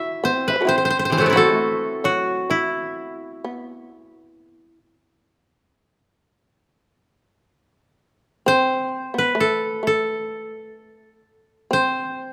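A moderate recital-hall reverb surrounds this short fragment of Japanese traditional chamber music, lending a still, austere air to its unhurried rubato pulse of 66 BPM in 2/4, set in the A kumoi mode. The koto carries the melody up front, its fingerpicked tone dry and woody as it moves between C3 and E5. Beneath it, the fretless shamisen plays a second line, plectrum-plucked with a buzzing, percussive bite that sounds powerful even at a lower level. The shamisen drops out at 3.9 seconds and the koto at 4.8 seconds, before both return together at 8.5 seconds. The sparse texture and the hall's lingering resonance leave the impression of a passage lifted from a longer piece.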